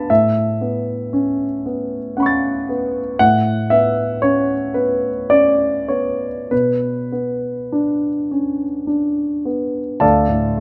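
A warm grand piano carries this brief, nocturnal fragment of impressionist classical music alone, its polished, present tone sitting up front with a short sustain. The playing moves in a relaxed triple metre with rubato, the pulse easing and stretching in a hazy, dreamlike way. Its range spans from D2 up to A6, giving the solo a full reach from deep bass to bright upper register. The harmony drifts from A69 at 0.1 seconds to Aadd9, settles on Bm at 6.5 seconds, then turns to Dm at 10.0 seconds before the piano stops at 10.6 seconds. Close, detailed microphones capture the instrument, with light reverb adding a gentle sense of space around this passage cut from a longer piece.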